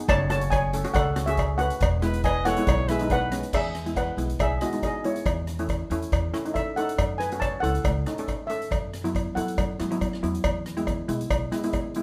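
Moderate studio reverb surrounds this sunny, bouncy calypso in E major at 139 BPM, cut from a longer piece, where a mellow, shimmering lead steel pan played with soft rubber sticks carries the melody over bright double-second pan chords struck with hard rubber sticks, a woody, growly pizzicato upright bass, a polished street-band drum kit with dark cymbals and a boomy kick, and a metallic cowbell, while a trumpet with light vibrato and a smooth top adds a brief classical-style second line from 2.0 to 3.5 s.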